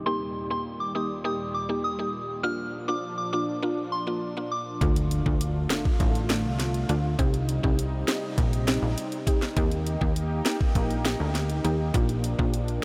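A lush, detuned unison pad with sidechain pumping and a woody, mallet-like synth pluck open this tough, bouncy dancehall excerpt as a soft, warbling synth bell carries the tape-echoed melody until 4.6 seconds, then at 4.8 seconds a very quiet impact ushers in a punchy, funky analog bass and an up-front electronic afro-pop kit with knocking kick and sharp snare, all soaked in a dreamy, huge ambient reverb.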